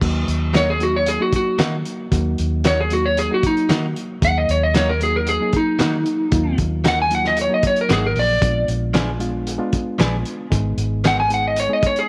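A straight-eighth 4/4 groove at 114 BPM drives this soulful, mournful soul blues in Eb harmonic minor, cut from a longer piece. A cloth-damped drum kit sits up front with a thuddy, muffled sound: fat snare, tight kick, and dark crash and hi-hat. Its gritty, saturated tone gives it a lo-fi, small-room feel. Beneath it a vintage muted fingered electric bass plays round and punchy, while a reedy, worn electric piano, slightly out of tune, supplies accompaniment through its built-in speakers. A clean, direct-recorded electric guitar adds compressed, picked stabs with spring reverb from 0.5 seconds, and a slightly broken-up electric slide guitar, placed forward in the mix, carries the melody as a solo from 0.6 seconds. The harmony moves from Ebm to Bb7b9 at 8.4 seconds and then to Abm, with light reverb and studio ambience around the whole mix.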